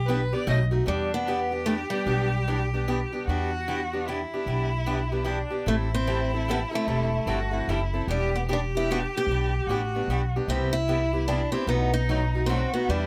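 Bittersweet and fiery, this brief cut from a longer jazz manouche piece swings at 150 BPM in 3/4 and E minor. A boxy, picked steel-string parlour guitar with fresh strings carries the melody from 0.9 seconds with audible finger squeak, pausing before returning at 5.7 seconds, while a second picked guitar plays the accompaniment over a woody, thumpy upright bass plucked on gut strings, and a distant, intense bowed violin sings a vibrato-rich second line through a light reverb.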